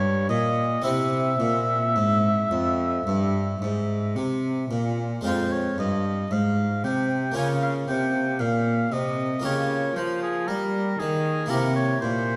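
A wet recital hall reverb surrounds this short cut from a longer baroque-style sonata movement, with a close-miked, dry harpsichord sitting up front beside a warm oboe and a rich cello. The mood is introspective and flowing, the pulse unhurried and shaped with rubato in four. The oboe carries the melody throughout, its vibrato-touched line and smooth top giving a singing, classical-style solo voice. Beneath it, the harpsichord plucks a full accompaniment from two sets of strings in a French style, while a single bowed cello with a reedy, gut-string period tone supplies the bass. The passage falls into two matching phrases, the second beginning at 5.3 s, and its minor-key harmony moves through half-diminished and dominant chords before arriving on C7 at 11.5 s.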